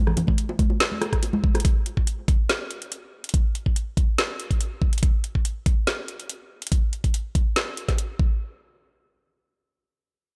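A knocking, layered electronic kick drum sits up front in this heavy, dark deep dubstep excerpt at 142 BPM, with a half-time, lightly swung 4/4 feel and a small-room character it shares with a garage drum kit of woody snare, rim click and metallic hi-hats running from 0.1 to 8.1 seconds, while bright, close congas and bongos with dub echo appear only until 1.6 seconds, all inside a digital ambience.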